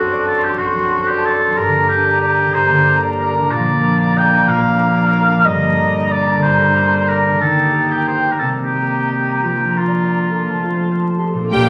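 A warm oboe sits up front in this sweeping, festive classical excerpt, its light vibrato carrying a distant, roomy quality as it shares the second line with a mellow, soft-edged clarinet and a pure-toned large flute ensemble whose crisp attack and rolled-off highs float above. A concert harp, ringing and fingerpicked, runs arpeggios alongside them throughout, moving in a flowing rubato 3/4 at roughly 164-202 BPM. The harmony opens in G minor over a D7/F# and turns toward Bb major from 3.5 seconds, passing through Eb, Cm7 and Bb/F before landing on F at 10.5 seconds. Only at 11.5 seconds do the strings arrive: a lush violin section in the background, a second, focused violin line, a smooth viola section up front, a clear cello section and a double bass section, all bowed with vibrato. A wet stone-room reverb and a layer of vinyl crackle give the whole a worn, resonant air, and the passage is cut from a longer piece.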